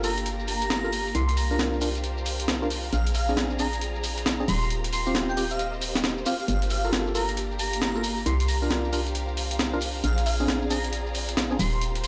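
This short cut from a longer piece sounds like it is playing through a big sound system in a bare room, with a large studio reverb and a touch of small-room ambience around it. It is a moody, soulful two-step UK garage groove with a swung feel. Up front, a gritty, compressed breakbeat kit with a high-tuned snare and hi-hat sits beside a bouncy, punchy FM bass with a hollow, knocking tone. A dark, percussive organ stab with chorus and dub echo plays until 11.6 s. Above them, an airy, dreamy lead carries the melody in a bright, detuned unison with vibrato, chorus and dub echo. Behind it all, a smooth violin section holds sustained chords, a lush, woody string section adds texture, and a very quiet, grainy shekere rounds out the percussion as the harmony moves through Gm9, C7sus4, Bb7 and Eb6.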